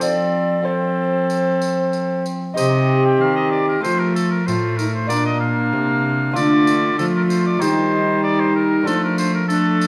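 A mellow, hollow tenor recorder with a tongued chiff and close, airy wooden tone carries a second line beneath a clear, distant oboe melody in this rustic, solemn Renaissance-style consort dance in C dorian, moving at 95 BPM in a straight 4/4. A bright, delicate fingerpicked lute on doubled gut strings and a warm, lightly vibrato viola fill out the accompaniment, while a rich, reedy period-style cello holds the bass and a jingly, vintage tambourine sits quietly in the mix. The ensemble plays throughout this brief fragment of a longer piece, bathed in the wet reverb of a recital hall, with chords moving from F through Cm, Bb and Dm.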